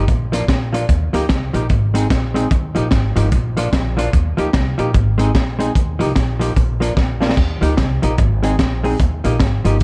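Ska at 148 BPM in Eb major, upbeat and bouncy with a swung eighth-note feel, this brief cut from a longer piece cycles through Bb, Ebadd9 and Ab chords. A clean, dark hollow-body jazz guitar sits up front with slapback echo over a woody pizzicato upright bass, while a crunchy breakbeat kit, gritty and saturated with a high-tuned snare, tight kick and dark cymbals, also carries slapback echo and drops a fill at 7.0 seconds. The small-room production is dark and warm.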